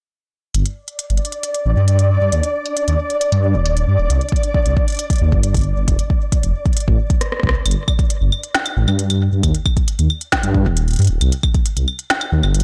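A rumbling, detuned sawtooth bass moving through a filter sweep and an up-front organic electronic kit of claves, smooth hi-hat, rim click and woody snare with delay open this intricate, playful IDM cut at 135 BPM. A flickering, grainy granular texture drifts in mellow reverb from 1.0 s, and a deep, tape-warm electronic kick arrives at 4.3 s. A drum fill leads into the second section, and the whole blown-out, overdriven mix carries light reverb, with the drums re-recorded in a large room.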